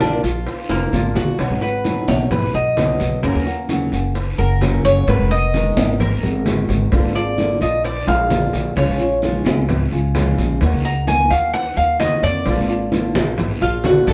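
This sultry Cuban son and guajira piece opens with the full band together. Up front are a metallic Cuban tres with double and octave-doubled strings and a woody, dark pizzicato upright bass, joined by a fingerpicked flamenco guitar with audible finger squeak. Behind them, low-tuned congas with thick skins and round, softly played bongos sit distant in a large room, alongside raspy guiro and grainy, mellow, close maracas in the background. After a drum fill at 0.7 seconds, the tres takes a solo from 1.4 seconds over chords moving through Bb, B, Gb, Abmadd9, Db and Ebm, with another fill at 8.1 seconds, all played live in one room under a wet studio reverb.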